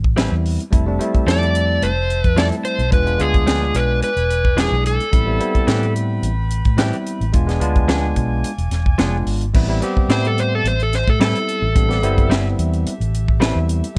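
A tight, dry funk drum kit and a round, foam-muted electric bass open this brooding, mournful straight-eighth soul blues excerpt, joined at 0.2 seconds by a bell-like tine electric piano and clean, compressed direct-recorded guitar stabs, while a bright horn section with light vibrato holds sustained chords in the background and a dark, overdriven slide guitar carries the melody up front before taking a solo from 9.5 seconds, all in a close, nearly reverb-free sound.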